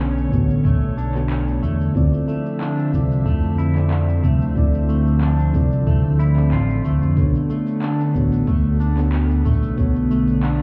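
Heard as if muffled through a club wall, this relaxed, wistful sunset chillout excerpt opens at 92 BPM with a round, dark FM electric piano and a breathy, detuned pad sustaining Bm9 and Dm9 chords, while a twangy clean electric guitar picks chorus-drenched arpeggios and an up-front fingered bass anchors the low end. A smooth R&B kit of cabasa, handclaps and silky hi-hat carries a gentle 16th-note swing, joined at 0.3 s by a soft, tape-toned electronic kick that stops at 9.9 s. Plate reverb and digital ambience lend a hazy sheen, with digital delay trailing the piano and guitar.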